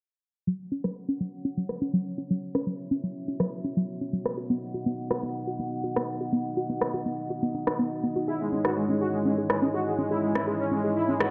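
A steady, straight 4/4 pulse at 123 BPM drives this hypnotic, melancholic slice of melodic techno, carried by an electronic rim click that enters at 0.8 seconds, tape-warm and layered, re-recorded in a large room and placed up front, with low-pass filtering on its snare and room sound. From 0.5 seconds a dark analog pad holds sustained chords, deep, moody and nasal, with a slow attack, a sub octave, long release and chorus, moving from F#sus4 to B to C#madd9. A warbly, dusty pluck spins arpeggios alongside it, lo-fi and wave-folded with a noise layer, fast attack and short decay, treated with chorus and delay. Filter sweeps run across the drums and the pad throughout, adding a restless, evolving shade to the otherwise fixed groove. At 8.3 seconds a soft supersaw melody arrives, smooth and detuned in unison, coloured by phaser and tape echo. The whole mix sits in a moderate, lush hall reverb under a low-pass filter, and the passage is cut from a longer piece.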